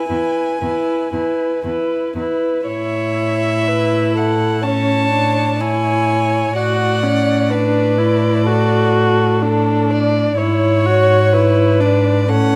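Lyrical and warm, this slow romantic string quartet passage unfolds in rubato, with the first violin singing the melody in a light vibrato and airy sul tasto bow, the second violin adding a woody, smooth-topped second line, the dark viola sitting up front with its accompaniment, and the cello grounding the bass with a pure, floating tone and soft attack, heard through close, detailed microphones in a moderate recital hall.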